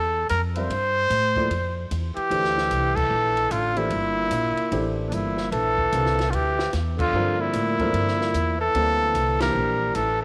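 A breathy, close-miked trumpet carries the melody up front with light vibrato in this hypnotic, spiritual modal jazz excerpt in G dorian, swinging at 149 BPM over a sustained Gm69 harmony. A growly, woody pizzicato upright bass anchors it, with a grand piano of deep bass and short sustain comping underneath, and a compact cocktail kit with a high-tuned snare and punchy kick sitting in a tight booth. A vintage-toned tenor saxophone with light vibrato enters at 2.1 seconds with a warm second line, while band accents punctuate the passage in a small room with light reverb.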